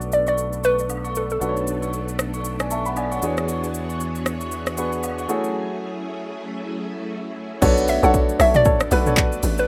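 A dark, detuned square-wave pluck carries the melody in this deep, soulful amapiano excerpt, with chorus and tape echo giving it a bouncy, hollow edge as it plays over the opening seconds and returns near the end. Beneath it, a clear grand piano with audible action noise and long sustain plays accompaniment throughout. Shimmering vintage string-machine violins hold sustained chords with ensemble chorus and sidechain pumping. An up-front electronic deep house kit drives the swung groove with a punchy kick, dark hats, handclaps, rim clicks, shaker, toms and crash, while distant agogo bells and woodblock add texture in the first half. A growly, bright fingered electric bass anchors the opening until 5.3 seconds, and after a break the drop at 7.6 seconds brings in a tight, percussive log drum bass, followed shortly by a mellow, nasal organ stab sitting in the background with chorus and tape echo, all over chords moving from Bm9 through E13 and F#m9 and back to Bm9, with light reverb and the rough feel of a home demo.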